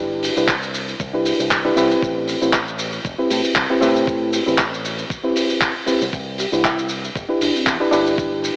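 A reedy, worn electric piano sits up front, bright and lightly overdriven, slightly out of tune and heard as if through built-in speakers, with spring reverb, sidechain pumping, a low-pass filter and cassette tape colour. This groovy, feel-good nu-disco fragment, cut from a longer piece, moves between Cmaj7 and Am7 before returning to Cmaj7 at 6.1 seconds, with a light swing on the sixteenths. A picked electric bass with an envelope filter runs underneath, direct and tube-saturated, while a dry, mid-forward 70s drum kit with handclaps, hi-hat and shaker sits close, joined by a thumpy, sampler-style electronic kick with tape colouring. From 6.4 to 7.7 seconds a soft, round synth lead layered in octaves with a sub octave slips in far back in the mix, dark and sustained, shimmering with chorus, tremolo and vibrato. The whole piece is wrapped in a lush hall reverb and the lo-fi haze of a home cassette recording with an AM radio character.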